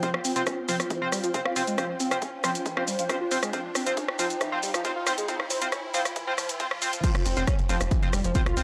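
A dry, gritty hardware sound frames this dark, industrial slice of driving peak-time techno at 137 BPM, where a layered, heavy electronic kick and an up-front analog drum machine with crash, hi-hat, rim click and shaker push under a screaming, guitar-like overdriven lead riff that carries a filter sweep through the build-up. An edgy sync-sweep polysynth stabs with a nasal, wave-folded bite, while an ethereal pad shimmers through phaser and reverb in the background and a riser climbs behind everything until 7.0 seconds. At the drop at 7.0 seconds, a tight, punchy sawtooth sequencer bass arrives at 7.2 seconds, pumping with the sidechain alongside the lead, stabs and pad.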